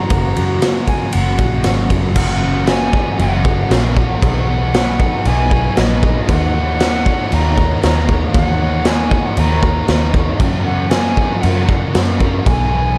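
A dark, warm small-room sound frames this wistful, blissful shoegaze and dream pop rock excerpt in F# major at 117 BPM, where a reedy flute with tape echo carries the melody over a crunchy overdriven guitar riff bathed in lush chorus, silky phaser-tinged string-machine chords, a round foam-muted electric bass and a gritty, up-front garage drum kit with a punchy kick, while a woody, shimmering twelve-string acoustic guitar and a hollow-body overdriven semi-hollow guitar sound only in the opening seconds.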